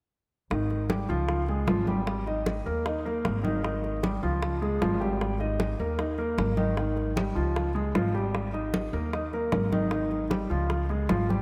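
A straight 4/4 groove of tight, high-tuned bongos and ringing, medium-tuned congas played with soft hands drives this lively, sophisticated Afro-Cuban jazz excerpt, where an intimate, up-front grand piano with audible action noise, deep bass and a subtle chorus accompanies over Ab, Db and Eb chords alongside a woody, growly pizzicato upright bass, all four parts playing from 0.5 to 11.4 seconds in a dreamy mix soaked in lush hall reverb.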